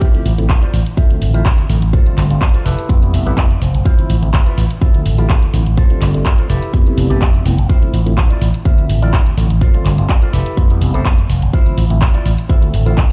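A 125 BPM groove with a light 16th-note swing drives this funky, nostalgic filtered disco house cut in D dorian, where a punchy, up-front electronic kick and a house kit of handclaps and bright, pumping hi-hats carry a bright, amped slap bass with envelope filter, an overdriven tine electric piano through a combo amp adds gritty Dm9, G9sus4 and Fmaj9#11 chords under phaser, and a twangy, picked electric guitar riff with envelope filter and vintage 12-bit sampler grit sits low in the mix, broken by clean guitar fills at 2.4 and 6.7 seconds, all under a filter sweep that spans the whole excerpt in a big, bare room.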